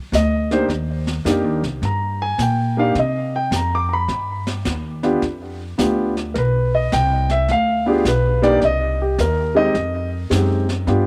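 Cool and swinging, this jazz piano trio excerpt in C minor moves at 106 BPM with a relaxed swing feel, cycling through Cm7, G7, Cm and Fm7. An intimate, up-front concert grand piano carries the melody as a solo throughout, its action noise audible and a touch of tape echo on its smooth, vintage tone. Beneath it, a woody, gut-strung upright bass played pizzicato sits close and dark, while a brushed kit with a high-tuned snare and hi-hat adds soft small-room texture under light studio reverb.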